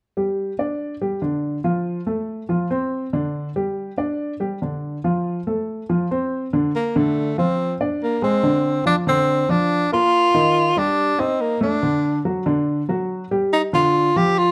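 Dark, warm studio sound with moderate reverb frames this lively, sophisticated jazz passage at 142 BPM in a straight 4/4, where a baby grand piano with audible action noise and short sustain accompanies through chords such as Dsus4, F and Ebmaj9 from 0.2 seconds, before a breathy, close-miked tenor saxophone with vibrato takes the solo melody up front at 6.8 seconds.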